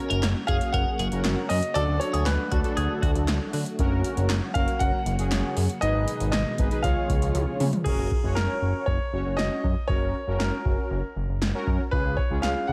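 Upbeat yet wistful, this synth-pop excerpt moves at 118 BPM in a straight 4/4 feel in F# major, cut from a longer piece. A fat, nasal analog bass with a saturated sawtooth edge and plucky filter sits up front, alongside an electro analog drum machine whose deep kick, punchy snare, handclaps, metallic hats, toms and crash are overdriven and carry a short room sound, with a drum fill at 7.3 seconds leading into the second section. A clear concert grand piano carries the melody from 0.5 seconds, polished and present with digital delay, while analog synth brass adds bold, brassy accompaniment with chorus and vibrato. A silky, vintage string machine holds soft background chords through phaser and ensemble chorus until 7.8 seconds, and a clean, compressed twelve-string electric guitar with phaser and digital delay offers a brief second line in the opening 3 seconds. The harmony moves from F# through D, G#m and C# before returning to F#, all set in light reverb.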